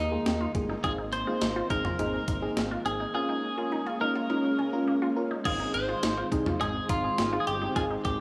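A bright, up-front twelve-string electric guitar carries the melody from the start, shimmering with subtle chorus and analog delay over vintage organ-like ensemble chords in the background, a squelchy, resonant blip pluck running arpeggios through phaser and delay, and a smooth, detuned synth bass. This wistful yet sunny synth-pop fragment in Ab major moves at 104 BPM in a straight 4/4, with a mellow FM electric piano joining at 0.1 seconds and a clean 12-bit drum machine with a thumpy kick, crash, hi-hat, snare and toms arriving at 0.3 seconds. Chords drift from Ebsus4 through Abadd9 and Bbm7 before settling on Ab at 5.5 seconds, all bathed in a moderate spring reverb and an echo-heavy mix.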